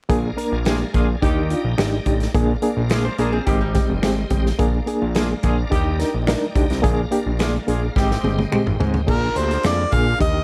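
Vinyl crackle and light studio reverb frame this uplifting, danceable slice of 1960s-style soul, where a reedy electric piano with fast tremolo, a gritty overdriven tonewheel organ through a slow rotary speaker, a fat detuned analog bass and a punchy natural drum kit carry the groove, a tight vintage horn section and background finger snaps join at 0.7 seconds, a hollow-body archtop guitar adds a brief clean riff at 3.0 seconds, and after a drum fill a smooth, up-front harmonica takes the melody at 9.1 seconds.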